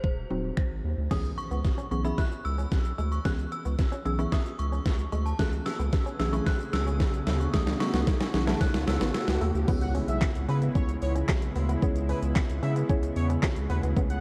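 Up front, a saturated sub bass, deep and thick, pumps against the kick through all 14.2 seconds of this driving, bittersweet dance-pop excerpt in C# minor at 112 BPM. The overdriven pop drum kit pairs a knocking kick and deep snare with handclaps, finger snaps, shaker, hi-hat and crash, and a drum fill runs through the build-up from 1.1 to 9.7 seconds. A chiming, inharmonic synth chime carries the opening melody with ensemble chorus and delay, while a woody, mallet-like pluck and a twangy, clean electric guitar riff sit in the background, and a shimmering, retro pulse-width pad arrives at 5.4 seconds to hold sustained chords. Just after the drop at 9.7 seconds, a bold, octave-doubled sawtooth lead with filter sweep, vibrato, phaser and delay enters at 9.8 seconds and takes over the melody, while a very quiet riser and impact mark the transitions. Chords move from C#m7 to Amaj7 and back, and the whole mix is soaked in moderate cathedral reverb with a dreamy cassette-tape haze.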